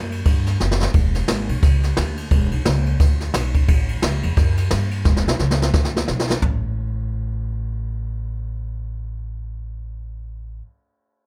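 A plucked upright bass opens this rollicking, retro rockabilly fragment, cut from a longer piece, and a brushed jazz drum kit joins almost at once with a swung eighth-note feel. The bass sits low and up front, its gut strings giving a woody, thumpy pizzicato tone. The kit sounds natural in a studio room, with a boomy kick, a medium-tuned snare, dark cymbals, and ride and toms, all played with brushes. A short drum fill marks the opening moments, and a longer one starts at 5.1 seconds and leads into a new section. The drums stop at 6.5 seconds, leaving the bass alone until the close at 10.6 seconds. The sound is dry and close, with little reverb.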